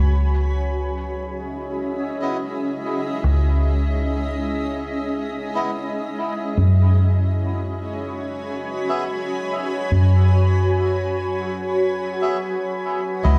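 A slow 72 BPM pulse in 4/4 with a light sixteenth-note swing carries this deep, hazy ambient fragment, cut from a longer piece and tuned to A4 = 444 Hz, moving from C#m9 to F#9sus4 at 6.6 seconds. A dark, round, foam-muted dub bass sits up front throughout, beneath a cloudy, detuned granular pad whose blurred, evolving sustained chords carry their own built-in reverb. From 2.2 seconds a reedy, nasal melodica with a vintage, band-limited character adds stabs trailed by dub echo, all set in light studio ambience.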